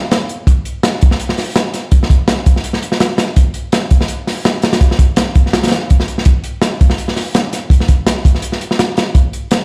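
A crunchy breakbeat drum kit comes in at 0.1 s and carries this dark, atmospheric drum and bass fragment to its close at 9.6 s. Kick, medium-tuned snare and hi-hat sit up front with a gritty, saturated, mid-forward character and a rolled-off top. The kick is tight, and the groove has a lightly swung sixteenth-note feel in 4/4. The kit sounds as if it is played through a big sound system in a bare stone room, with a light reverb adding a stony air to this short section cut from a longer piece.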